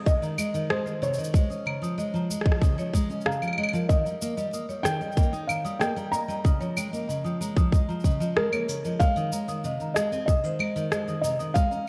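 A bright, full-bodied fingerpicked steel-string acoustic guitar opens this delicate, warm folktronica excerpt with up-front arpeggios under delay, alongside a dark, smooth marimba playing a second line through tape echo. A soft, intimate felt-muted upright piano carries the melody with audible action noise and short sustain, while a tight electronic kick sits up front beside electronic cabasa, claves and rim click, both tape-tinged and re-recorded in a large room. Plate reverb soaks the mix in a dreamy haze as the chords move from Ab through Db, Eb and Bbm7 back to Ab.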